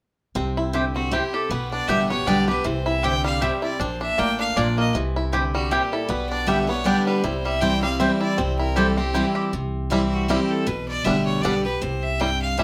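A clear, earthy fiddle carries the melody up front with light vibrato and an airy bow, entering at 0.9 seconds in this joyful, lively bluegrass piece in swung triple time, cut from a longer performance. Beneath it, a full-bodied steel-string guitar with fresh strings picks its accompaniment, a twangy, percussive banjo rolls arpeggios played with fingerpicks, and a woody, thumpy upright bass plucks gut strings, while a round-toned mandolin adds double-string stabs until 9.2 seconds. The band sounds as if playing live together in a small room with a short reverb, and a Bb chord briefly steps away from the mostly C and G harmony.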